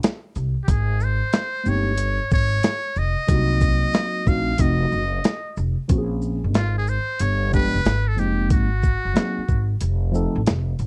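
Jazz-hop at a swung 92 BPM in Bb minor, this mellow, cool fragment of a longer piece opens with a gritty, compressed sampler-style drum kit of thumpy kick, medium-tuned snare, hi-hat and shaker, joined at 0.4 seconds by a woody, growly pizzicato upright bass up front, then by a buzzy, thin metal-muted trumpet soloing with soft attack and light vibrato, while from 1.6 seconds a clean tine electric piano with phaser adds jazzy chords like Abmaj7, F7b9 and G7b9, all captured in a dry, close 1970s-style studio sound.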